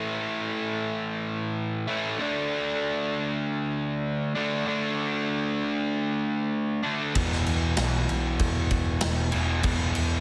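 Hard rock with a swaggering, anthemic mood, cut from a longer piece and set in a straight 4/4. An overdriven electric guitar opens alone at 0.0 s with a dark, picked, double-tracked riff that sits up front, carried by a slapback echo and moving through A5, D5 and then E5. At 7.2 s a hollow-body short-scale electric bass, amped and round, enters alongside a big acoustic rock kit whose bright cymbals, medium-tuned snare and tight kick ring naturally in a big room. The kit sits up front with crash cymbal, kick and snare as the arrangement fills out for the closing seconds. A moderate, lush hall reverb with a 2.5-second decay gives the recording a spacious, arena-sized feel.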